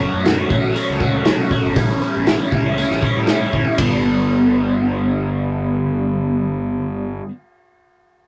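Set in a straight 4/4 pulse, this short cut from a longer indie rock piece feels wistful yet upbeat. An overdriven electric guitar carries the riff up front, its dark, double-tracked, picked tone colored by a phaser and ranging from low G2 up to F#4. Beneath it, a fuzz-drenched fingered electric bass adds a bright, growly edge, overdriven and sitting lower in the mix. A vintage acoustic drum kit of hi-hat, kick, ride and snare plays only from 0.3 to 3.9 seconds, sounding muffled and lo-fi with dark cymbals, a medium-tuned snare, a tight kick and a rolled-off top. The harmony moves from F#m to A7, then settles on G as the second section begins at 3.8 seconds, where guitar and bass continue together. The whole take has the rough feel of a rehearsal room, with a modest booth ambience and saturated warmth.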